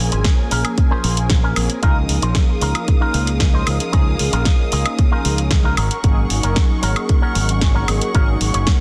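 A straight 4/4 groove at 114 BPM drives this short nu-disco excerpt, with a punchy electronic kick arriving up front at 0.3 s alongside a house drum kit of punchy snare, bright hi-hats and woodblock. Beneath it, a growling fingered electric bass, overdriven and direct, sits prominently in the low register and gives the track its sensual, groovy pull. An electric guitar run through an envelope filter plays a dark, clean, compressed riff touched with subtle chorus and dub echo. A mellow synth brass part adds round, detuned sawtooth accompaniment with filter sweeps, vibrato, phaser and dub echo. Above everything else in pitch, a dark, woody studio string section holds lush sul tasto chords that pump with sidechain compression. The harmony moves from Bbm7 to Db69 and then Ab9sus4, all in a dry, dense and heavily limited modern mix.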